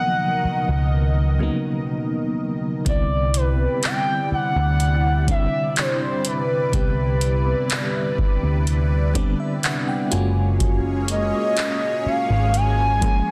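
Romantic and smooth, this contemporary R&B passage, cut from a longer piece, floats a gliding, detuned portamento lead with chorus, tape echo and vibrato over a mellow FM electric piano with tremolo, which adds a fill at 8.7 seconds, and a lush, thick unison pad treated with chorus and phaser. A dark, round hollow-body picked electric bass sits up front from 0.4 seconds, and a booming analog drum machine with deep kick, metallic hats and handclaps arrives at 2.9 seconds, re-recorded in a large room. The mix carries little reverb and a dense, heavily limited modern master, with the harmony moving through major ninth chords.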